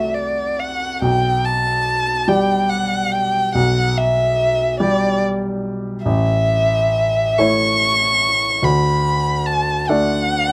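A 6/8 pulse moves with uneven beats and rubato, the time stretching and easing through this short romantic classical passage cut from a longer piece. The mood is tender and serene, a duo of violin and grand piano heard together from 0.0 to 10.5 seconds. The violin carries the melody, warm and expressive, a single bowed player with vibrato, soft attacks and portamento, sitting close and up front. Beneath it the grand piano supplies a clear, present accompaniment, also up front, reaching down into its low register. The harmony moves from D7 over C to G over B, settling on A near 6.1 seconds and arriving on D at 8.6 seconds, all wrapped in a light reverb.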